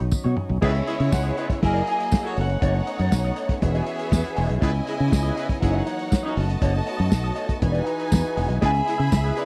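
A short drum fill on a dry, muffled soul kit opens this glamorous, danceable disco excerpt, over an overdriven tonewheel organ holding thick chords through a slow rotary speaker and a clean semi-hollow guitar with wah and vibrato tucked into the background. A punchy fingered electric bass sits up front beside the tight kick, medium-tuned snare and dark cymbals, while a jingly tambourine adds a faint shimmer. At 0.6 seconds the full arrangement arrives: a lush, bowed violin section carries a second line, and a present horn section punctuates the groove with pop-style stabs. A bright, ringing concert harp plays the melody until 4.6 seconds and returns near the close at 8.7 seconds. The harmony cycles through rich extended chords, moving from C#m9 through F#13, B9/F# and Emaj9. The sound is a close, dry 1970s-style studio recording with little reverb.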